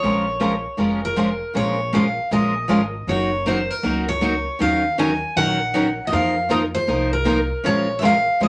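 A bright, full-bodied jumbo steel-string guitar carries the melody up front from the start, alongside a second, warm acoustic guitar comping close beside it, a softer guitar with audible finger squeak further back, and a dark, thumpy upright bass plucked on gut strings, all playing together from the first moment. This fiery, virtuosic burst of jazz manouche swings at 157 BPM in Bb minor, moving through Bbm7, Gb6, Ebm9 and F7sus4 before returning to Bbm7. A wet studio ambience surrounds the players, and the 8.5-second passage is cut from a longer piece.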